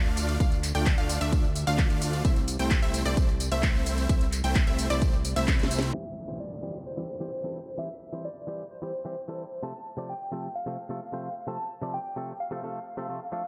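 Euphoric and anthemic, this festival progressive house excerpt in C major runs at 130 BPM in a straight 4/4, opening mid-drop with huge, detuned supersaw chords, a fat, saturated analog bass and a background unison pluck arpeggio all pumping against a punchy, tape-warm electronic kick and a house kit of cracking snare, metallic hats, handclaps, tambourine and crash over Dm and Am/C. A drum fill at 5.5 seconds leads into a new section at 5.9 seconds where a catchy square-wave unison lead with vibrato takes the melody. A twangy, direct-recorded clean electric guitar with spring reverb accompanies it over C and F/C, while an electronic downlifter falls away beneath a long filter sweep and low-pass-filtered digital ambience.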